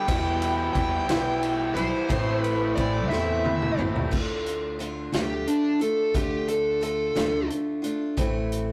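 A rough rehearsal-room recording with a stone room's moderate reverb gives this wistful, dusty folk rock and heartland rock cut in 6/8 a saturated, lived-in sound. A bright picked steel-string acoustic guitar, finger squeaks and all, plays alongside a woody pizzicato upright bass and a natural country drum kit with dark cymbals and a punchy kick. A raw, double-tracked overdriven garage guitar riffs through a drum fill that starts at 3.1 seconds, stopping at 4.1 seconds, when the smooth, up-front overdriven lead guitar that has carried the melody from the start takes a solo over the chords.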